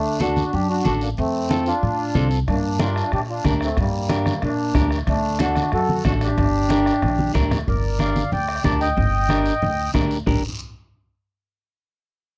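A dry, close 1970s-style studio sound with light reverb frames this fiery, driving cumbia fragment, where a reedy, mellow accordion sits up front carrying the melody through a slapback echo over a woody, thumpy pizzicato upright bass. A dark, clean picked electric guitar, also up front, adds accompaniment, while low-tuned congas with a thick-skinned tone sit in the background beside a faint, raspy guiro, and a distant, soft-beatered bombo joins at 2.5 seconds. The chords move from D and F to G minor, and a drum fill at 7.2 seconds leads into a new section of this passage cut from a longer piece.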